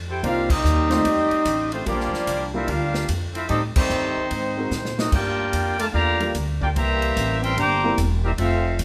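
Swinging in 4/4 at 147 BPM, this brassy, energetic big-band jazz fragment opens on woody pizzicato upright bass, joined at once by a tight, up-front trumpet section carrying the melody with light vibrato over a mellow trombone second line, a present grand piano accompanying with long sustain, and an airy drum kit with dark cymbals and a punchy kick, with band accents at 0.4 and 3.7 seconds and a drum fill at 4.7 seconds, the ensemble sitting in a moderate large-studio reverb.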